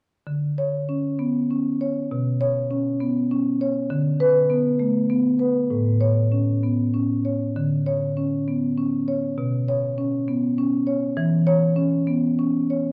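Flowing and playful, this excerpt from a contemporary classical piece for solo marimba moves in a rubato 6/8 at 66 BPM, its soft mallets drawing woody, round, mellow tones from rosewood bars that sit up front and range from A2 to C#5 across chords such as Bmadd9/D, Bsus2 and Aadd9 from 0.3 to 12.9 seconds, all bathed in a wet recital hall reverb and colored by the warbly pitch drift of worn old cassette tape.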